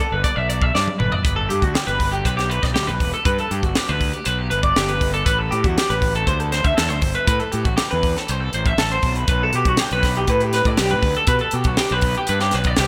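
A twelve-string electric guitar opens this short, playful math rock and midwest emo excerpt, picking bright, twangy arpeggios between F#4 and E5, its clean, compressed tone spread by a lush chorus and delay. A fuzz-laden fingered electric bass arrives almost at once, overdriven and punchy down in the low register, and a crisp fusion drum kit follows at 0.2 seconds with hi-hat, punchy kick, high-tuned snare and toms in an airy studio room. A drum fill from 0.7 to 1.2 seconds carries the band out of a brief opening into the main section, which runs to the end at a straight 120 BPM in 4/4. The harmony in G major moves from G to Am7 at 5.3 seconds and then to a B7 with the third omitted at 9.3 seconds, giving the passage a bright lift. All three parts sit up front in a polished, 1980s-style digital production with light studio reverb.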